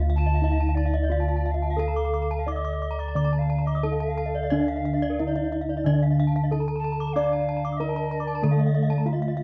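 A dark, lightly reverberant production frames this brilliant, shimmering fragment of Balinese gamelan in D pelog, moving at 88-98 BPM in a straight 4/4. Ringing bronze metallophones in paired tuning carry a smooth wooden-mallet melody, two bright horn-mallet arpeggio lines (one airy and set back, the other close and dry), and from 4.5 seconds a boxy lower accompaniment, while round, beating bossed gongs hold the bass up front. An alto recorder adds a woody, chiffy second line with vibrato and a slapback echo.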